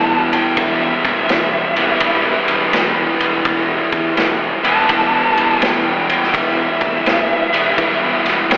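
Blues rock power trio with a southern rock edge, this gritty, heavy excerpt swings at 83 BPM in E minor over a single Em chord. An up-front, double-tracked fuzz guitar drives a bright, compressed riff while a dark, distorted lead guitar solos high above with slapback echo, and a growly fingered bass with overdrive anchors the low end. A vintage acoustic kit of kick, ride and snare enters at 0.3 seconds, sitting in the background with dark cymbals and a rolled-off top, and a lush hall reverb lends a big arena sound tinged with a telephone-like quality.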